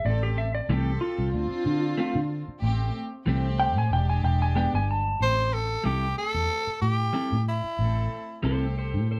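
A clean lap steel guitar, played with fingerpicks and compressed, takes a slide solo through the first 5.2 seconds of this smoky, soulful minor-key blues excerpt at 93 BPM with a light swing, its volume swells drifting over Am7, Dm7 and E7#9 chords. A dark, round, foam-muted electric bass sits up front beside picked, compressed stabs from a clean electric guitar, while a distant bowed chamber string section holds soft, floating chords beneath. At 5.2 seconds a raspy, gritty tenor saxophone with vibrato steps forward with a punchy melody, and the band sounds live in one room with moderate reverb.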